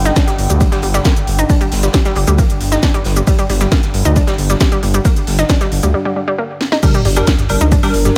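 An overdriven, punchy electronic kick sits up front in this dark, intense stretch of driving peak-time techno at 135 BPM in G minor, joined by a rumbling detuned saw bass, a layered techno kit with a cracking snare and smooth hats, and a quieter, gritty garage kit in a bright stone room. A nasal, wave-folded analog pluck riff with chorus and dub echo pumps against the sidechain, while a resonant, overtone-sweeping drone with phaser and a warbling, nostalgic tape-like pad hover in the background until the drone stops at 5.9 seconds for a short break and a drum fill. At 6.8 seconds the drop hits on a G minor chord with an impact, bringing in a crisp, evolving wavetable chord stab with digital delay and a very quiet sub drop.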